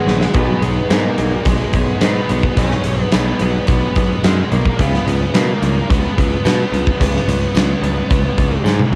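Dreamy and blissful, this short cut from a longer rock piece sits in shoegaze and dream pop territory, moving at 108 BPM in a straight 4/4 and centred on B lydian. An octave-fuzz lead guitar carries the melody from the start, its distorted, fuzzy tone smeared by cassette tape and tape echo, while two background guitars build the riff beneath it: a dark, thick fuzz guitar coloured with analog chorus, and a slightly broken-up, compressed electric guitar through a small old amp, fingered and lo-fi, trailing reverse reverb. Up front, a modern bright picked electric bass adds growly, punchy weight, and a huge arena drum kit with a punchy kick, medium-tuned snare, hi-hat and toms carries a pumping hall sound, opening with a fill at 0.1 seconds and closing with another at 8.7 seconds. A jingly tambourine enters at 0.9 seconds, very quiet and tucked into a small room. The whole is a home recording on cassette with little reverb overall, its harmony resting on B6 before moving to C#7 at 4.8 seconds.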